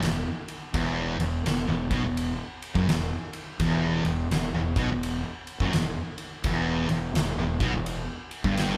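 An E5 power chord opens this brooding, ominous slice of stoner and doom metal, with the whole band sounding together from the first moment and playing through to 8.8 seconds. Two thick fuzz guitars grind out the riff in a low register, set back in the mix; one carries a warmer tone while the other leans darker, both distorted and picked. Up front, a fingered electric bass growls with overdrive and tube saturation, its fuzzy, punchy tone sitting beneath the guitars. An oversized, low-tuned acoustic drum kit also sits forward, with a fat snare, a punchy kick and ride cymbal ringing in a big room. The slow, swung 4/4 groove and light reverb give the feel of a band playing live together in one space, cut from a longer piece.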